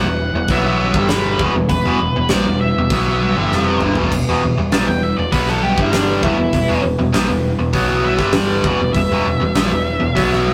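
The biting overdriven guitar stands out most, its double-tracked riff sitting up front in the mix with a warm, overdriven edge. This is a dark, cathartic stretch of quiet-loud alternative rock in E minor at 99 BPM in a straight 4/4, cut from a longer piece and resting on an Em chord. Beneath the riff, a dark, full-bodied steel-string acoustic guitar picks arpeggios, while a woody fretless electric bass with a round, hollow-body tone holds the low end. A huge arena drum kit, with bright cymbals, a fat snare and a punchy kick in a hall-like space, enters at 0.5 seconds and rolls through a fill from 3.5 seconds. At 4.1 seconds the octave-fuzz lead guitar takes a solo, its dark, distorted melody running through to the end. The whole has the rough feel of a rehearsal room, with tube saturation and a moderate studio reverb.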